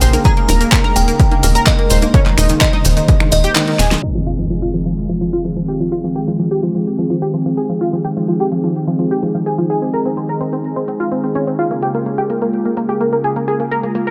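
An emotional, bittersweet stretch of progressive house, cut from a longer piece, moves in a straight 4/4 pulse under light reverb, a digital ambience and a low-pass filter. The opening bars stack a glassy, crystalline FM bell melody with chorus and delay, a smooth detuned analog pad holding sustained chords, and a round, bright analog pluck spinning arpeggios through chorus and dub echo, all three breathing with sidechain pumping. Beneath them a tight, driving sawtooth sequencer bass sits up front, while a punchy, overdriven electronic kick re-recorded in a large room leads a deep house kit of finger snaps, handclaps, hi-hat and a fat snare, with a grainy acoustic cabasa and overdriven congas tucked into the background. The kick drops out as a band accent hits, followed shortly by a drum fill, and at 4.0 seconds an electronic impact marks the shift from an Eb7sus4 chord to Fm7. From there the pad, the pluck and the drum kit carry on, the pluck under a filter sweep, until the harmony turns to Bbm7 at 11.6 seconds.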